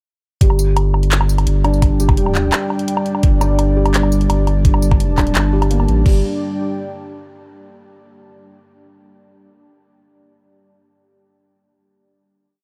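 A sparse half-time beat at 170 BPM, built from a knocking electronic kick and a small-room kit of tambourine, closed hi-hat, low woodblock, handclap and crash, drives this heavy, cinematic drum and bass piece: a saturated, up-front sub bass plays chopped phrases, a felt-muted upright piano with audible action noise and delay repeats a 10-step loop that drifts against the bar, and a moody, detuned sawtooth pad with chorus, 12-bit sampler grit and sidechain pumping slowly shifts chords before holding alone as the final chord from 6.2 to 7.4 seconds.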